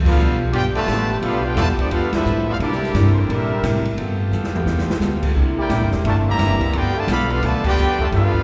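Energetic and swinging, this big band jazz clip moves at a brisk 174 BPM in G major, with a swing feel and chords shifting between G9 and C9. Bright trumpets carry the melody from 0.1 seconds, joined by a bright trombone section with light vibrato on a second line, both given plate reverb and a slapback echo. In the background, a clear, tight saxophone section with vibrato holds sustained chords, while a full-bodied jumbo steel-string acoustic guitar, fingerpicked, adds accompaniment. A woody, thumpy pizzicato upright bass sits up front as the loudest part, and an open jazz drum kit with dark cymbals, a medium-tuned snare and a boomy kick drives the band, playing a fill from 4.3 to 5.0 seconds. The whole band hits accents at 0.0, 2.1 and 7.6 seconds, and the sound comes across as a live gig heard through a venue's PA, with moderate club reverb and the air of a recital hall.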